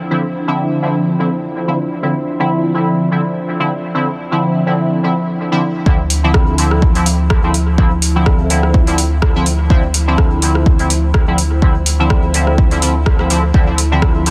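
A dark, full-bodied ambient pad holds a Dm9 chord in the background to open this hazy, deep dub techno excerpt in D minor at 125 BPM with a light swing, joined almost at once by juicy, resonant polysynth stabs with filter sweeps, chorus, phaser and dub echo, before a round, soft sub bass and an overdriven, up-front electronic kick arrive at 5.9 seconds, followed at 6.1 seconds by a deep house kit of metallic hi-hats and rim clicks with dub echo, while the pad, stabs and bass pump under a dense, heavily limited master.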